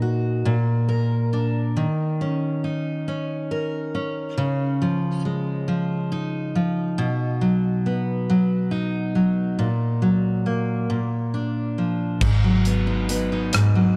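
With light studio reverb on a dark production, this melancholic, dramatic six-eight pop ballad in Eb minor at 46 BPM, cut from a longer piece, opens on an up-front, full-bodied picked steel-string acoustic guitar with audible finger squeak moving through chords such as Dbadd9, B and Gb/Bb, until at 12.2 seconds a round, foam-muted vintage electric bass and a small-room drum kit with a tight kick, hi-hat, rim click and crash cymbal join for the Abm7 close.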